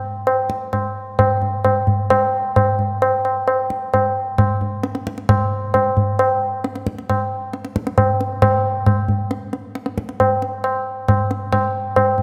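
Heard in a wet concert hall with a lingering 2.4-second reverb, this meditative, solemn Indian classical excerpt in a straight 7/4 features a low-tuned, ringing acoustic tabla, close, dry and up front, playing from 0.3 to 12.2 seconds as the pace speeds up.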